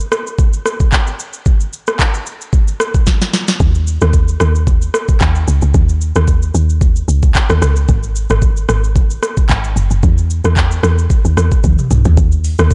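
A hypnotic, deep amapiano excerpt at 112 BPM opens on an electronic afro-pop drum kit with a knocking kick, sharp snare, metallic hats, shaker, handclaps, rim clicks and toms, set up front and swung on the sixteenths. After a drum fill, a round, percussive log drum bass with a fast attack and a noise layer enters at 3.6 seconds, decaying low alongside the groove, before another fill at 11.6 seconds. The production is dark and dry, with little reverb.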